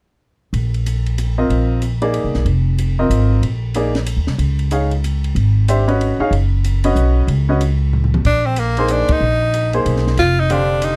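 Modal jazz in a swinging 3/4 at 187 BPM, this short excerpt from a longer piece carries a spiritual, hypnotic mood over suspended chords that shift from Bb9sus4 to Db9sus4 and back. A woody, thumpy upright bass played pizzicato sits up front from the start, entering together with a compact cocktail drum kit with a high-tuned snare and punchy kick, kept low in the mix, working across hi-hat, ride, snare and toms. A clear, natural baby grand piano enters at 1.4 seconds to supply the accompaniment. After a drum fill, an edgy, forceful tenor saxophone takes the melody at 8.3 seconds with scooped, punchy notes, and the band hits an accent at 9.1 seconds. The production is dark and dry, with little reverb, keeping the players close and present.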